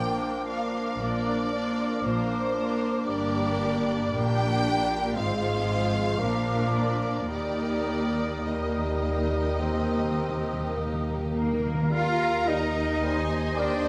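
Heard through close, detailed microphones with light reverb and some lossy compression artefacts, this solemn, yearning excerpt from a slow romantic orchestral movement moves at 50-61 BPM with rubato in 4/4, settling into Eb major from 3.1 s as a lush, focused violin section carries the melody over rich violas, a mellow clarinet, a pure-toned flute group, a background second violin section, a warm bassoon, a punchy French horn section holding chords, distant cellos, double basses with portamento, and round soft-mallet timpani that return for a fill from 7.3 s, before a clear oboe enters at 11.4 s.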